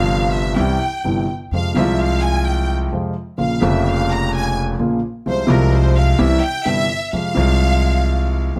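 The rhythm moves in a loose, rubato four, giving this short excerpt of a tango a pulling, elastic feel that suits its melancholic and dramatic mood. A lush, bowed violin section carries the solo line across the full 8.6 seconds, its soft attack and expressive vibrato lending the high register a rich ensemble sheen. Beneath it, a concert grand piano supplies the accompaniment with a warm, deep-bassed tone that sits up front in the mix. An acoustic upright bass plays pizzicato on steel strings, its woody, dark sound anchoring the low end. The harmony moves from Csus4 and C to Fm, through Bbm and Fm/C, then back to C and Fm, all framed by a moderate studio reverb.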